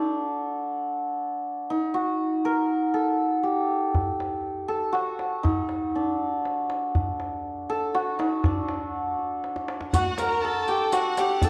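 A dark, warm production sits in the wet bloom of a recital hall, giving this stately Persian modal ensemble piece a spacious, rounded sound. In triple time, an up-front hammered santur carries the melody, its shimmering, ringing strings heard alone at first before a tight, acoustic tombak joins at 3.9 seconds. A drum fill leads into a new section at 9.9 seconds, where two bowed second lines enter. One is a single woody violin played sul tasto with vibrato, and above it sits a chamber violin section, clear and biting with light vibrato and a smooth top. A riq adds bright jingles, close and dry under soft hands, sitting low in the mix. The fragment is cut from a longer piece and ends just as this fuller texture has arrived.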